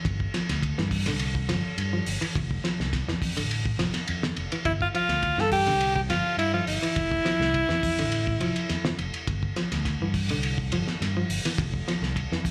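Heard as a live club gig through the venue's PA, this hypnotic, driving afrobeat excerpt moves at 104 BPM in a straight 4/4. A twangy electric guitar at the edge of break-up plays arpeggios with slapback echo, joined almost at once by a cloth-damped, muffled drum kit with a fat snare, tight kick and dark cymbals that sits up front, and a round, amped fingered bass, all over a G7sus4 and Fmaj7 vamp. From 4.7 to 8.9 seconds an edgy, forceful alto saxophone takes a close-miked solo with vibrato and its own slapback echo.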